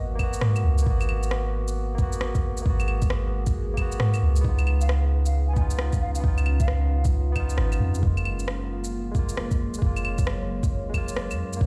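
Played through a big system in a bare stone room, this nocturnal, rainy future garage excerpt moves at 134 BPM in a swung 4/4, with a soft, round 808-style bass warmed by tube saturation sitting up front under the overdriven electronic kick and an overdriven shaker, claves and rim click. A barky tine electric piano, clean through a combo amp and pumping with tape echo, carries the G#m7, C#7 and F#maj7 changes over a deep, detuned sawtooth pad that breathes with chorus and reverb in the background. A mellow, hollow jazz flute with airy chiff and vibrato surfaces briefly from 4.8 to 7.0 seconds, trailing tape echo.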